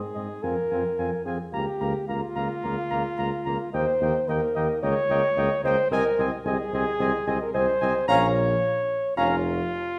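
Stately and noble, this classical brass quintet excerpt moves at 110 BPM in a straight 4/4, its harmony passing from Fm through Bbm/Db, Eb and Ab/C before settling on Bbm at 8.1 seconds. A smooth-topped French horn sits up front as accompaniment beside a tuba bass with light vibrato, while a warm trumpet carries the melody above a close-miked, mellow flugelhorn second line and a bright trombone set back in the mix. A recital hall reverb with a 1.4-second decay gives the ensemble a wet, resonant space.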